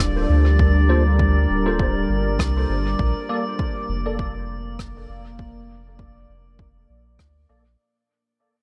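Set in a small, roomy space and fading throughout, this spacious, meditative ambient dub fragment moves from Gm11 to Bbmaj7 over a moody, detuned chorused pad, a round, up-front sub bass and a glassy drifting-harmonics shimmer, with an overdriven electronic kick arriving at 0.6 seconds, clean tine electric piano stabs through low-pass filtering and dub echo at 0.9 seconds, and an airy, echoing rim click joining at 2.4 seconds.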